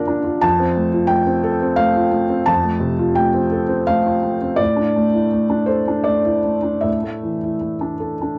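A felt-muted upright piano plays alone throughout this intimate, reflective fragment of a longer neoclassical minimalist piece, moving in a rubato 3/4 at roughly 75-88 BPM from an F chord at 0.4 seconds to Asus4 at 4.6 seconds across a span of F2 to A5, its boxy, mellow tone sitting up front with audible action noise, cassette tape coloring, and a moderate studio ambience that gives the home recording a close, private feel.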